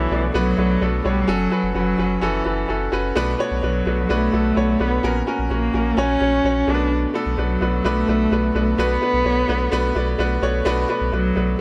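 A straight, steady 4/4 pulse drives this bittersweet piano-driven pop excerpt, where a clear, intimate baby grand piano with audible action noise supports a single bowed cello singing a rich, expressive melody with vibrato and portamento, while a saturated, deep, thick sub bass sits slightly lower in the mix beneath chords moving through Bm7, F#m and F#/A#, all framed by light reverb and small room ambience.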